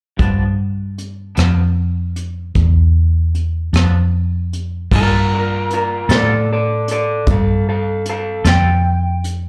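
A slightly broken-up, lo-fi electric guitar through a small old amp takes a clean solo with slapback echo at 5.0 s in this rollicking, gritty slow blues in 12/8 at 51 BPM in G mixolydian, moving from G7 to G9 over a bright, twangy guitar with tremolo and slapback, a round, foam-muted fingered bass up front, and a dark, smooth brushed drum kit with a punchy kick, all heard as a live gig through the venue's PA with club reverb in a passage cut from a longer piece.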